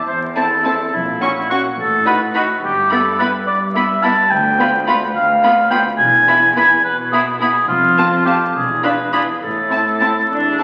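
A mellow oboe sits up front, its soft attack and light vibrato carrying a roomy, slightly distant second line alongside a small bowed string ensemble in this playful, whimsical film cue cut from a longer piece. Over it, a focused violin section sings the melody high in its range, while a second, expressive violin section stays in the background and a smooth viola section fills in the accompaniment. A rich cello section anchors the bass from the start, and a clear, intense double bass section joins in the background at 0.9 seconds, dropping out at 10.0 seconds. In a lilting 6/8, the harmony wanders through quirky, slightly crooked turns before settling on an A minor chord at 9.4 seconds, giving the passage a magical, storybook air. The whole recording sounds like a very old 78 rpm record, with vinyl crackle beneath a wet scoring stage reverb.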